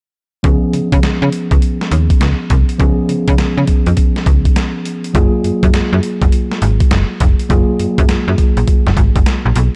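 This short excerpt of new jack swing R&B rides a swung sixteenth-note groove at 102 BPM in 4/4, with a flirty, upbeat mood. A sampler-style boom bap drum kit sits up front, compressed, pitched down and gritty, with a thumpy kick, a medium-tuned snare and hi-hat. A slap-like FM bass shares the foreground, its snappy, metallic attack and digital decay spanning E#1 to C#3. Beneath them, a mellow tine electric piano plays clean, direct accompaniment between E#3 and G#4, sitting lower in the mix. All three parts enter together at 0.4 seconds, and the harmony moves from C#7 to F#maj9 at 5.1 seconds. The production is dark and dry, with little reverb, keeping the groove close and intimate.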